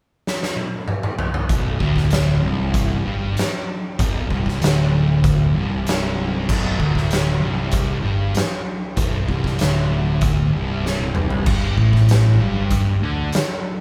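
An oversized, low-tuned acoustic drum kit sits up front in this hypnotic, ominous stoner and doom metal excerpt cut from a longer piece, its boomy kick, fat snare and dark cymbals filling a big, pumping room, with a fill opening at 0.2 seconds. At 1.5 seconds two thick, picked fuzz guitars, one set back in the mix, come in on a Bm riff together with a growly, bright electric bass, and after a second drum fill the riff moves to G5 at 11.5 seconds. The band sounds like it is playing live in one room with light reverb, the drums gritty and saturated.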